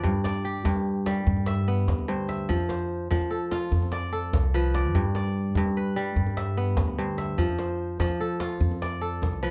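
Bright, ringing kora arpeggios, crisp and fingerpicked up front, open this flowing, hypnotic fragment of West African string music in a straight 12/8, joined from the start by woody, thumpy pizzicato upright bass on gut strings and a deep djembe with a live-room sound, all cycling between G and F chords under light reverb in a dark production.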